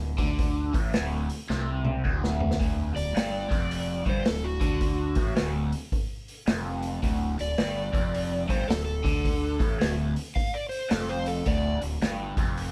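A bright, scooped riff from the overdriven, double-tracked electric guitar with phaser opens this driving, swaggering excerpt of blues rock and southern rock on a D5 chord, alongside a growly fuzz bass and, at 0.2 seconds, an up-front vintage kit with punchy kick, medium-tuned snare and a pumping small-room sound. The power trio swings at 108 BPM in 4/4, and a drum fill at 1.5 seconds sets up the overdriven slide guitar, whose dark, fingered solo runs from 3.0 to 11.8 seconds. The band plays live in one room with moderate studio reverb.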